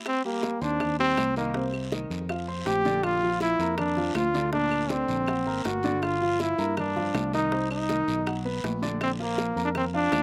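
A danceable, sunny salsa groove in straight 4/4 opens on tight, high-tuned bongos with a slapback echo, ringing congas kept very quiet, raspy guiro and woody, vintage claves sitting in the background. A polished baby grand piano with its own slapback echo joins at 0.2 seconds, and a round, punchy fingered electric bass adds a dark, amped low end from 0.6 seconds. Up front from the very first moment, a bright, close-miked trombone carries the solo melody with vibrato and slapback echo, all set in a dry outdoor space with little reverb.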